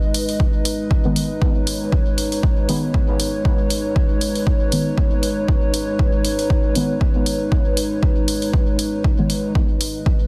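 Hypnotic and meditative, this dub techno excerpt moves at 118 BPM in 4/4 with a light 16th-note swing, resting on a single G# minor chord throughout. A dark analog pad sits up front, holding sustained chords with a slow attack and long release, its detuned, ring-modulated tone thickened by chorus, 12-bit sampler grit and sidechain pumping. A layered electronic hi-hat enters at 0.1 seconds, followed by a punchy electronic kick that drives the groove from 0.4 seconds, both carrying studio reverb. From 1.1 seconds a deep, mellow chord stab enters in a low register, its soft, warbling, decaying voice colored by chorus, phaser, sidechain pumping and dub echo, with a filter sweep running across it. The mix has light reverb and a dense, heavily limited modern master, and the recording is cut from a longer piece.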